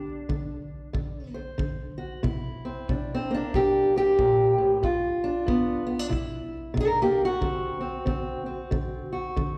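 This acoustic country blues fragment, cut from a longer piece, has a soulful, rollicking mood at 93 BPM in 4/4, with the eighth notes swung. A fingerpicked steel-string parlour guitar carries the melody from the first moment, its dark, boxy tone sitting up front and trailed by a slapback echo. At 0.3 seconds a punchy kick drum joins, played with brushes and carrying a small-room character beneath the guitar. The harmony moves through D7, C7, G7, back to C7 and then D7 across the 9.6 seconds. The sound is that of a live gig heard through the venue's PA, with light reverb and the reverb of a recital hall around the players.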